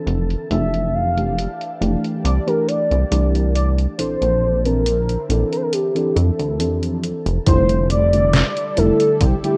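A velvety, detuned sawtooth synth lead carries the melody up front, its smooth tone touched by vibrato, chorus and tape echo in this nostalgic, dreamy vaporwave fragment in F major at 69 BPM. Beneath it, a mellow FM electric piano plays round, full-bodied, dark accompaniment with lush chorus and analog delay. A thick unison pad holds sustained chords in the background, bright and slow to bloom through its phaser. A glossy, nasal synth bass with tube saturation sits prominently in the mix, and a detuned 8-bit drum machine ticks out hi-hat and a medium-tuned snare, joined by a thumpy electronic kick at 7.5 seconds. Light digital reverb and a filter sweep soften the rough, cassette-toned home-demo sound as a rootless Bbmaj9#11 alternates with Fmaj13.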